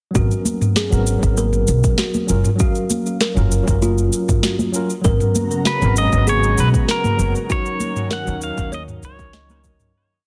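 Relaxed and smooth, this sunset chillout groove rides a growly, woody pizzicato upright bass up front over a deep, overdriven electronic kick and a light lounge beat of sharp snare, shaker and low toms, with soft, high-tuned congas in the background, while a worn, slightly out-of-tune tine electric piano plays syncopated chord stabs with delay and a mellow kalimba spins a six-step arpeggio loop drifting against the bar; a lush, warbling vintage pad enters at 5.0 s, a bright, twangy pedal steel guitar brings a motif-based melody with volume swells at 5.7 s, and the piece fades out from 6.7 s under light reverb.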